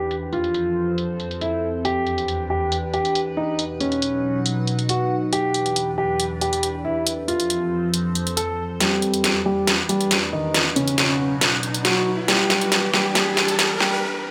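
A half-time 4/4 groove at 138 BPM drives this aggressive, heavy wobble dubstep excerpt in E phrygian, tuned to A4 = 438 Hz. Up front, an electronic, layered drum kit of hi-hat and deep snare hits with overdriven grit and carries the sound of a small room. A dark, mellow baby grand piano with long sustain plays the melody through a low-pass filter and tape echo. Beneath it, an evolving, morphing wavetable pad in unison holds bright, triangle-toned chords with a slow attack and long release, colored by phaser and its own reverb, over a progression that moves through F, Em7 and B. A filter sweep runs through the opening, and from 8.8 seconds the music turns to a build-up: the drums play a fill, the piano gets its own filter sweep, and a background riser enters at 10.3 seconds. Everything sits in a moderate, lush hall and reaches a break at 14.0 seconds.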